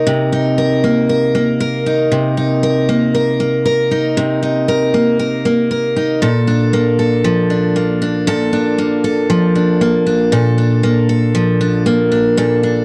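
A straight 4/4 pulse at 117 BPM carries this short folktronica piece in Bb major, cut from a longer work and tuned slightly sharp to A4 = 443 Hz. A picked steel-string acoustic guitar plays alone from 0.0 to 12.8 s, ranging from Bb2 up to Bb4 with an auditorium-sized body and an up-front presence. Its tone is warm yet coloured by a vintage 12-bit sampler grit, which gives the acoustic sound a faintly crunchy, electronic edge. The harmony rests on Cm7 at the start and moves to Bbmaj7 at 6.2 s, where a second section begins. The mood is warm and delicate, set in a dry, close 1970s-style studio sound with a light touch of reverb.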